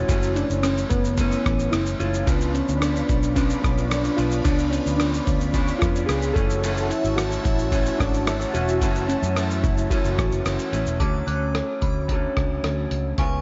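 A straight 4/4 groove at 110 BPM from an up-front, muffled lo-fi sampler-style drum kit with a thumpy kick, hi-hat, ride, rim click and shaker anchors this wistful, mellow bedroom-pop snippet in F# minor, where a round, foam-muted vintage bass and a dark, slightly broken-up electric guitar through a small old amp, treated with analog chorus and a warbly pitch drift, support a nostalgic, detuned synth-keys melody with tape echo, while a swirling phased analog pad enters at 2.3 seconds beneath the C#7b9 and returning F#m7 chords and a crystalline FM synth bell takes a second line at 11.0 seconds as the harmony shifts to Dmaj7, all set in light reverb with a softened top end.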